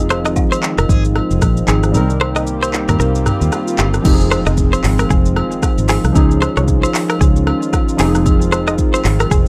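Detuned analog keys with chorus, a smooth, airy sawtooth pad and a round, foam-muted fingered bass open this hypnotic, sultry afrobeats passage in F minor at 114 BPM with a 16th-note swing, joined almost at once by a bright, twangy clean guitar riff through tape echo, an up-front electronic drum kit with deep kick, metallic hats, handclaps, shaker, rim clicks, toms and crash, and saturated agogo bells and woodblock in the background, while the kick drops out from 1.9 s as a very quiet electronic swell leads to an impact at 4.0 s, all over chords moving from Fm7 through Cm7 to Dbadd9 in light reverb.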